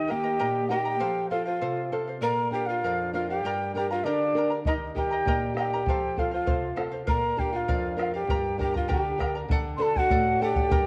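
Melancholic and earthy, this Andean folk piece in G minor moves at 99 BPM in a straight 2/4 and is cut from a longer performance. A mellow, pure-toned quena carries the melody with a touch of tape echo, while breathy, bright pan pipes with vibrato and chiff play the second line. Beneath them, a shimmering charango with double strings and a fingerpicked nylon-string guitar, its finger squeaks audible, cycle through Eb, F, Bb and G minor before a turn to D at 9.5 seconds; a round, vintage-sounding bombo enters up front at 4.7 seconds, and the dark production sits in a moderate recital hall reverb.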